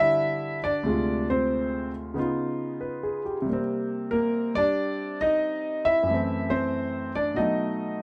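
Swung eighth notes at 92 BPM in 4/4 give this short solo jazz passage a relaxed, lilting gait, and the mood is playful yet sophisticated. A single concert grand piano carries everything, ranging from D2 up to E5, with a deep bass register and an intimate, natural character. The instrument sits up front, and close, detailed microphones catch the audible noise of its action, adding a tactile presence under a light touch of reverb. The harmony moves through rich, colourful changes: G5, Dm7b5, C#9, Cm7 and F#m7b5, arriving on B7 at 7.4 seconds. Cut from a longer piece, the fragment runs 8.0 seconds and feels like a glimpse into an unhurried, inventive performance, tuned to A4 = 439 Hz.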